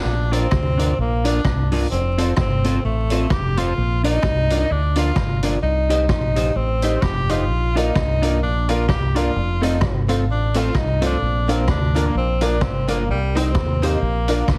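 A bright tenor saxophone with vibrato and slapback echo carries the melody in this bouncy, joyful ska excerpt in Bb major at 129 BPM with a swung feel, over a round, up-front deep dub fingered bass, a dark, clean semi-hollow electric guitar with analog chorus, and a street-band drum kit of hi-hat, boomy kick and rim click, while a metallic, jangly tack piano adds stabs from 7.8 seconds, all set in light reverb with a heavily compressed radio sound and vinyl crackle.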